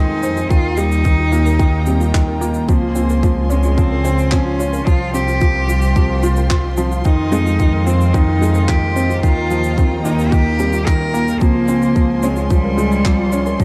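A straight 4/4 pulse at 110 BPM drives this intimate, moving piano and strings electronica, with a distant, roomy shaker and handclaps (brushed, with a rolled-off top) arriving at 0.2 seconds and a tight, up-front electronic kick joining at 0.5 seconds. Underneath, a rich, reedy double bass section with gut-string tone and light vibrato is bowed in a near, prominent position, its level breathing with sidechain pumping. A symphonic string section holds smooth, even chords higher up, pumping in the same way. A clear, focused solo cello carries the melody with vibrato, matched in level by a soft, felt-muted upright piano riff whose short sustain and audible action noise make it feel personal, while a very quiet, warbling lo-fi pluck with a nasal, chorused tone traces arpeggios in the middle register. The harmony cycles through Fm7, Ebadd9, Dbmaj7 and Csus4 in a dark production with moderate recital hall reverb and small room ambience, in a passage cut from a longer piece.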